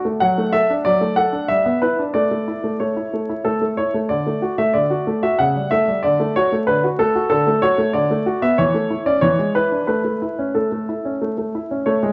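Elegant and cheerful, this brief classical-period piano sonatina passage in triple metre is cut from a longer piece and features a solo grand piano that sounds clear, present and up front. The harmony moves gracefully through its opening phrases before settling into a new key from 7.9 seconds. A moderate recital hall reverb surrounds the instrument, while vinyl crackle and a softened top end lend the recording an old, intimate patina.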